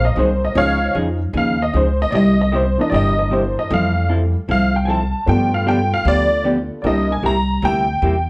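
Moderate studio reverb surrounds this short excerpt, with a jangly, detuned honky-tonk upright piano and a growly, woody upright bass both sitting up front. It's a down-home, playful slice of western swing in a swung 4/4, the vintage-sounding piano taking the lead as a solo throughout while the plucked bass anchors the low end. A dark, clean hollow-body electric jazz guitar, played with the fingers, adds quieter accompaniment from 0.2 s over changes that move from Ab7 through Dbadd9, C7, Fmaj7 and G7 before returning to C7.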